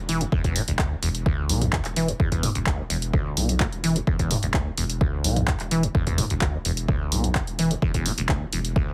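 A deep, saturated sine sub bass with sidechain pumping opens this raw, hypnotic acid house excerpt at 128 BPM, joined almost at once by a squelchy, resonant sawtooth acid riff with filter sweeps, phaser, overdrive, subtle chorus and delay, a tape-warm analog drum machine of handclaps, hi-hat and toms, and a punchy electronic kick re-recorded in a large room, set over an E7 chord with its third omitted in a dry, heavily compressed, radio-style mix.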